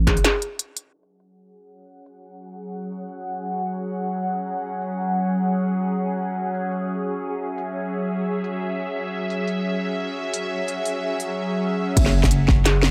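A dry, gritty, filtered sound frames this cinematic, tense half-time drum and bass excerpt at 174 BPM, where a growling, buzzy 808-style bass with tube saturation and a heavy electronic kick hit in the opening moments and return at 12.0 seconds, an industrial kit with a clanging snare and crisp hats plays throughout, and from 2.5 seconds a detuned, string-like drone with phaser, vibrato, sidechain pumping and 12-bit sampler grit hangs over an F#5 chord beneath a long filter sweep.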